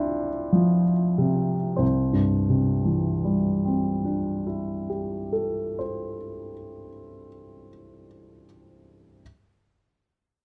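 Impressionist classical solo piano in a rubato 3/4, serene and hazy, with a smooth, vintage-toned grand piano placed up front and ranging from C2 to C5, slowing down over the first 1.8 seconds as a Dm11/C chord gives way to C69, all in a dark production with light reverb, cut from a longer piece.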